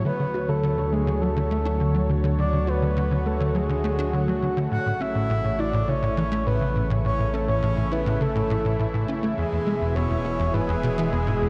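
A steady, straight 4/4 pulse at 103 BPM drives this cosmic, expansive stretch of ambient sequencer-driven space music in A major, where a punchy sawtooth sequencer bass riff with chorus and analog delay rides over a round sine sub bass, a thick, warbling, detuned unison pad sustains chords through chorus and shimmer reverb, and a breathy flute-like synth lead with vibrato enters at 0.1 s to carry the melody through chorus, shimmer reverb and analog delay, all set in a wet concert hall as the chords move from D to A at 4.7 s and E at 9.4 s.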